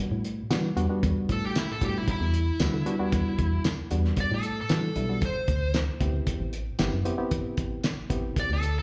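A straight-eighth soul blues groove in 4/4 at 114 BPM sets a brooding, smoky mood in E minor, tuned slightly low at A4 = 437 Hz, in this brief cut from a longer piece. A cloth-damped drum kit thuds up front with a fat snare, tight kick, hi-hat and tambourine, its gritty, muffled tone rolled off at the top. An organ-like FM bass sits beside it, hollow and dark with a fast, percussive attack that then decays. A reedy, worn electric piano comps underneath, a touch out of tune and carrying a slapback echo. From 1.3 seconds a smooth overdriven lead guitar takes the solo, bright and picked, with slapback echo and analog delay, over a move from Em7 to Am7 at 5.2 seconds. The whole band sounds like a live club gig heard through the venue's PA, with light reverb and small-room ambience.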